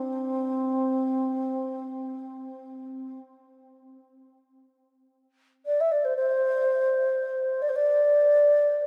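A mellow wooden-headed alto flute plays alone in free time from 0.0 s to 8.9 s, its pure, straight, tongued tone ranging from C4 to E5 and tuned to A4 = 439 Hz, trailed by a diffuse ambient delay and set in a huge, wet ambient reverb that gives this brief excerpt of calm, peaceful world meditative music a distant, spacious air.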